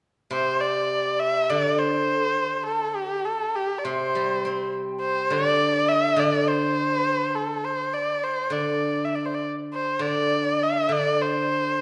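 Bathed in the wet reverb of a recital hall, this pastoral, graceful fragment of Chinese traditional chamber music at 102 BPM moves in a free, rubato 4/4, with a single up-front bowed erhu carrying a dark, nasal, somewhat boxy melody full of vibrato, portamento and soft attacks, while a steel-string zither played with fingerpicks supplies a ringing, silvery accompaniment in its lower register from 0.3 to 11.8 seconds.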